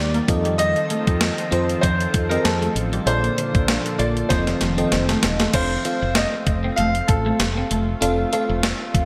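This short excerpt of 1980s-style pop opens with a clear concert grand piano carrying the melody through a delay, over an FM electric piano with a soft pad layer whose dreamy, fast-attack, decaying tones shimmer with chorus. A lush unison pad, thick and detuned with a slow attack and long release, sustains chords in the background, while a woody fretless bass sounds dark and round underneath. From 0.1 s a gated digital drum machine sits up front with a thumpy kick, hi-hat, crash cymbal and a snare drenched in gated reverb, and a clean, picked twelve-string electric guitar plays a compressed riff further back with subtle chorus and delay. The mood is urgent and dramatic, moving through F7 and Bbmaj7 before a drum fill at 4.3 s leads into a new section resolving on F at 5.5 s. The piano melody ends at 7.7 s, leaving the other parts to carry on inside a bright digital production bathed in a wet hall reverb.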